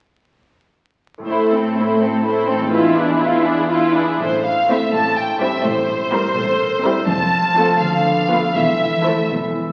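A 6/8 pulse, pushed and pulled with rubato, carries this urgent, dramatic classical fragment cut from a longer work. A ringing, fingerpicked concert harp sets out its arpeggios at 1.2 seconds, and a bowed string orchestra joins almost at once: an up-front violin section sings the melody with focused, lush vibrato, while a second, smooth violin section traces a warm inner line. Beneath them, an intense viola section fills in the accompaniment and a close, rich cello section anchors the bass with even tone. At 4.2 seconds the harmony turns toward its second passage and a distant double bass section slips in far in the background, deepening the low end. The whole ensemble sits in a reverberant concert hall and reaches the ear through the crackle of a very old 78 rpm record, lending the drama a faded, antique patina.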